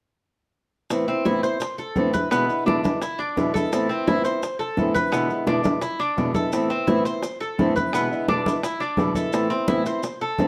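Ringing, soft-handed congas, round, low-tuned bongos and grainy, mellow maracas set a straight 4/4 groove at 171 BPM beneath a nostalgic Cuban son and guajira in A harmonic minor, where a bright, boxy fingerpicked archtop guitar with fresh strings and finger squeak enters up front at 0.9 seconds alongside the percussion, joined at 1.1 seconds by the metallic double strings of a warm Cuban tres playing arpeggios, all alternating between Amadd9 and E7 in a moderate studio reverb in this passage cut from a longer piece.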